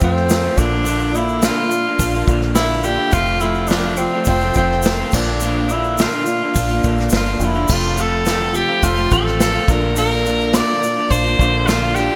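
A bright, 1980s-style digital sheen and a lush hall reverb frame this nostalgic, jangly folk-rock and heartland-rock excerpt, which moves in a straight 4/4 over F and Bb chords. Up front, a clear tenor saxophone with light vibrato and digital delay sings the melody, sounding distant and roomy, while a twangy, slightly broken-up electric guitar through a small old amp plays a riff bathed in spring reverb, and a parlour acoustic guitar is picked in the background with a hint of finger squeak. A deep, round, foam-muted fingered bass anchors the low end beneath a soft brush kit with gated reverb, a grainy tube shaker and a very quiet, mellow tonewheel organ holding sustained chords through a slow rotary speaker.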